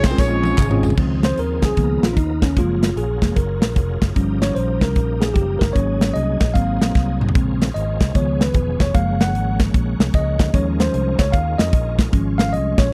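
A clear horn section states a brief melody over gritty organ chords with slow rotary swirl, round fingered electric bass, a tight, up-front studio drum kit and background tambourine and handclaps for the first 0.9 seconds of this reverent, hopeful uptempo gospel cut at 151 BPM in Db major with a swung feel, before a bell-like tine electric piano takes a solo from 1.0 seconds through lush jazz-tinged chords such as Dbmaj9, Gbmaj9 and Bbm9, with a drum fill at 7.0 seconds, all captured in a dry, close 1970s-style studio sound.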